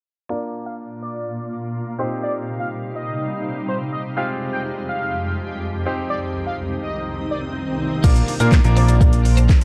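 From 0.3 seconds a bold, retro octave-doubled lead carries the melody over a bright baby grand piano with audible action noise, both pumping with sidechain compression and muffled by a low-pass filter sweep that runs through the opening build. A shimmering, ethereal pad soon spreads sustained chords beneath them, its detuned, granular tone glistening through chorus and reverb, while the lead's vibrato, phaser and dub echo add a nostalgic sheen. The harmony moves from Bb through Cm and Fmadd9 and back to Cm, giving this bittersweet dance-pop cut at 124 BPM in straight 4/4 a yearning lift. A background electronic swell rises at 6.6 seconds, and at 8.0 seconds the drop lands on Bb: a fat, detuned sawtooth analog bass and a smooth R&B drum kit, with its soft kick, fat snare, metallic hats, handclaps, shaker and crash, jump up front, while a clean, picked twelve-string electric guitar adds a compressed riff further back. 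The production is dark and warm, with light digital ambience, and the energetic piece breaks off just after the drop arrives.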